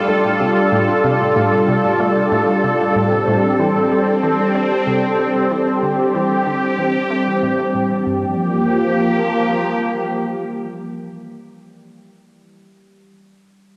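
A resonant, detuned pad leads this cosmic, hypnotic piece of ambient, sequencer-driven space music at 94 BPM in G dorian. Its bright, airy sawtooth chords sit up front with a slow attack, a filter swell, chorus and a cassette-tape haze. Beneath it, a very quiet fingerpicked concert harp rings out acoustic arpeggios, and a dark, breathy, wind-like tuned noise texture hangs in the background. An analog pluck carries the riff with a round, nasal, wave-folded tone, fast attack and short decay, colored by chorus, cassette tape and tape echo. The harmony moves from Fadd9 to Am7 while a synth arpeggio sound fades out across the opening 8.1 seconds, and the music then settles onto Gm7, with the harp ringing on to 11.6 seconds. A lush hall reverb and the lossy artefacts of a home cassette recording give the fragment, cut from a longer piece, a worn character.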